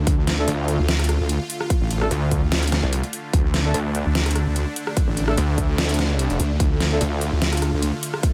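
A growling, overdriven saw bass snarls up front alongside a saturated, detuned wobble bass with chorus in this menacing, heavy wobble dubstep fragment in D minor, moving at 147 BPM with a half-time feel over a D5 chord. An overdriven electronic kick hits punchy and close, joined by a dubstep drum kit with a deep snare, metallic hats and rim clicks, while a lush supersaw pad with phaser and sidechain pumping sustains bright chords underneath. From 0.4 seconds a mellow brass section adds tight stabs with light vibrato and dub echo in the background, all set in a digital ambience.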